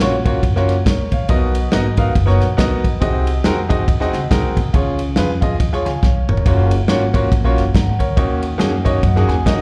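From the first beat, a clear, up-front concert grand piano with long sustain, plate reverb and slapback echo joins a woody, pizzicato upright bass and a dry, dark soul drum kit with a tight kick in an uplifting, hopeful uptempo gospel groove at 140 BPM, swung in 4/4 and set in F# major. The piano moves through chords such as F#maj7, Bmaj7 and D#m7 while the bass holds a dark, woody low end and the drums keep a smooth ride cymbal pulse, breaking into a fill at 6.0 seconds. The piano takes its own fill from 8.6 seconds in this short cut from a longer piece, which sounds like a live club gig heard through the venue's PA with light club reverb.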